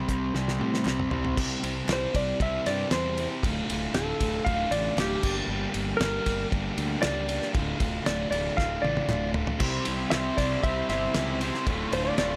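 A compressed, clean lap steel played with slide carries the melody from 1.9 seconds over a gritty, swaggering classic rock groove, where a sludgy distorted guitar riff runs throughout, a bright, crunchy overdriven guitar adds its riff at the opening and again from 9.6 seconds, a growly fuzz bass punches underneath, a dry, cloth-damped drum kit with a fat snare and dark cymbals thuds up front with fills, and very quiet, crisp group handclaps sit in a moderate large studio reverb, in this passage cut from a longer piece.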